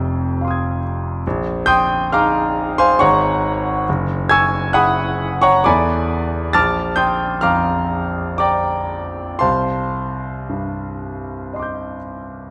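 A clear, intimate concert grand piano plays alone in this hazy, wistful piece of impressionist classical music, drifting in 3/4 with rubato at roughly 56-72 BPM through largely suspended chords from Fm9 to Cmadd9, its deep bass and long sustain sitting up front with audible action noise inside a moderate concert-hall reverb and a dark, warm production, in a short passage cut from a longer work.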